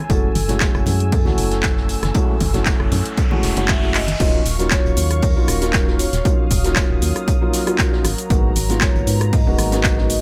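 A punchy analog kick, captured in a large room, drives this smooth, late-night deep house excerpt with a gentle swing, anchored by a hollow, dark FM bass with an organ-like bite and sidechain pumping. Felt-muted upright piano stabs, mellow and intimate with audible action noise and dub echo, sit over a detuned, warbling analog pad with chorus, while a soft-mallet vibraphone carries a ringing, airy melody through tape echo in the background. A layered house kit with crash, handclaps, hats, rim click and shaker is joined by a very quiet, gritty indie kit of hi-hat and fat snare, small-room congas play until 4.2 seconds, and an electronic riser from 1.7 seconds builds to a drum fill and the drop at 4.2 seconds, all in a dry mix.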